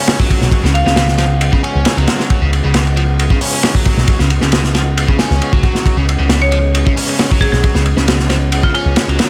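Swaggering and funky, this 135 BPM breakbeat excerpt in straight 4/4 rides a crunchy, gritty drum kit with a tight kick and dark cymbals, set up front beside a round, amped picked electric bass, all over a C#7 chord. A biting, double-tracked overdriven guitar riff carries sampler grit and dub echo, while a tonewheel organ sustains full chords in the background with key click, chorus vibrato, a slow rotary speaker and sidechain pumping. A bright marimba played with hard mallets flickers briefly at 0.7 seconds and returns with its telephone-filtered, dub-echoed melody from 6.4 to 8.8 seconds, all within a studio reverb.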